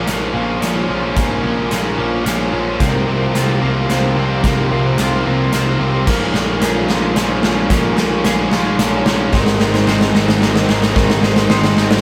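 A brooding, cathartic post-rock build-up in 3/4 opens with a bright, double-tracked overdriven stack guitar riff up front over a fuzz-soaked picked bass, while a very quiet twangy clean guitar and a ringing vibraphone play arpeggios and a lush, bowed string section holds sustained chords underneath. At 0.1 seconds a huge arena drum kit arrives with a boomy kick, medium-tuned snare, hi-hat and crash, playing a drum fill through the whole passage. The band sounds as if it is playing live in one room with moderate reverb, moving through Bbm7, Fsus4/C and Abadd9.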